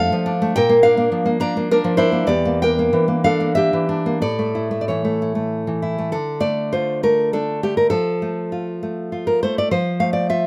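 A romantic piece for solo classical guitar in D minor, this short passage, cut from a longer work, carries a melancholic, intimate mood. It moves in 3/4 with a rubato feel, the tempo drifting between 90 and 107 BPM, and the guitar is tuned to A4 = 442 Hz. A single fingerpicked nylon-string guitar sits up front, its fresh strings and warm, acoustic tone spanning from E2 up to Bb5. The harmony opens on Dm/F, passes through Bb and Em7b5, and settles on A before a new section begins at 6.2 seconds, returning to Dm and then moving to F. Close, detailed microphones and light reverb keep the sound near and intimate.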